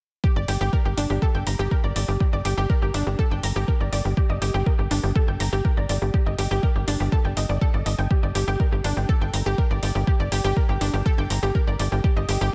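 Lightly reverberant and capped at 10.6 kHz, this brief cut from a longer melodic techno track sits on a G minor chord at 122 BPM in a straight 4/4, carrying a dramatic, cinematic mood. A deep, overdriven, layered kick sits up front beside a tight, punchy, nasal sequencer bass on G1 that pumps to the sidechain, while metallic, overdriven hi-hats also pump. Higher up, a round, detuned analog pluck with chorus and diffuse ambient delay spins bright, pumping arpeggios from D4 to Bb5 until the harmony drops away at 12.0 seconds.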